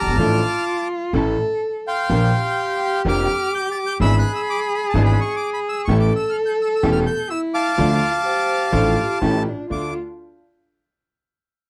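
A reedy bandoneon carries the melody up front in this sultry, dramatic D minor tango excerpt at 126 BPM with a rubato feel, shadowed by a dark, nasal bowed cello with vibrato and portamento, over a clear vintage concert grand piano, a woody pizzicato upright bass and very quiet, distant stabs from a rich string section, while a bright, ringing vibraphone slips into the background at 8.3 seconds, all in a dry, close 1970s-style studio sound.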